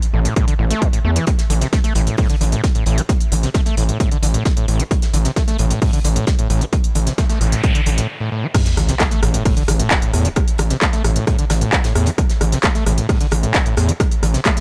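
Dry and up front, this dark, hypnotic driving peak-time techno excerpt in A minor runs at 132 BPM, with an overdriven heavy kick, a gritty, saturated synth bass and a squelchy, bright screaming acid line under a filter sweep, its distortion, chorus and digital delay pumping alongside an overdriven electronic kit of crash, handclaps, smooth hats and rim click, while a very quiet acoustic 70s kit adds hi-hat and a medium-tuned snare, and a background noise sweep and sub drop lead into a brief break at 8.1 seconds before the drop hits with an impact at 8.5 seconds.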